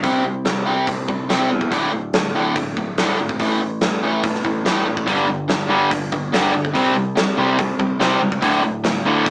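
The recording has the rough, saturated character of a rehearsal room heard through a small speaker, set in a moderate studio ambience. This heavy, aggressive hard rock passage is cut from a longer piece and moves in a straight 4/4. An overdriven electric guitar sits up front with a bright, picked riff over the chords C5, D5, A5 and G5, while a punchy, growly picked bass plays direct underneath. A gated 80s drum kit supplies hi-hat, tight kick and medium-tuned snare with a polished, airy big-room sound. At 5.1 s a second, crunchy overdriven guitar joins with its own riff in the same register, thickening the attack until the fragment ends at 9.3 s.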